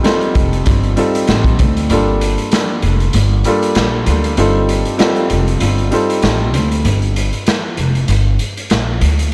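A small, echo-heavy room gives this gritty, moody boom-bap hip-hop track in G minor a close, reverberant sound at 97 BPM, with a swung 16th-note feel. A dark, mellow concert grand piano with short sustain and a filtered, delayed, vintage tone plays chords moving between F9 and Gm9 until 6.5 seconds, while an upright bass with woody pizzicato tone on steel strings sits up front from 0.4 seconds. The raw garage drum kit brings a punchy kick, medium-tuned snare and hi-hat with a rolled-off top and analog delay, though the kick drops out at 1.9 seconds.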